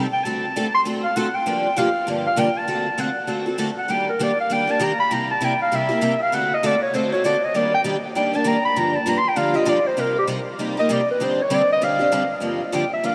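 Jazz in a bittersweet, virtuosic mood, cut from a longer piece, where a warm clarinet with vibrato and scooped notes solos from the start over a bright, boxy picked steel-string acoustic guitar carrying the chords through analog chorus, the clarinet's delay and a huge ambient reverb soaking the dreamy swung mix as the changes move through D7, Gm7, Ebmaj7 and C7 before settling on Gm7 at 12.4 seconds.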